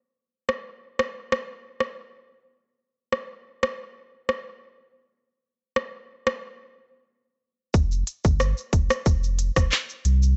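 A dark digital ambience frames this hypnotic, bouncy dancehall fragment, cut from a longer piece. An up-front electronic island pop drum kit, tape-tinged and tightly produced, carries the groove from 0.5 s with a tight kick, smooth hi-hats, handclaps, rim clicks and shaker, moving through a break at 6.4 s. At 7.7 s a deep, round sub bass with a sine-like tone enters up front, its fast attack giving way to sustained, mellow notes beneath the beat.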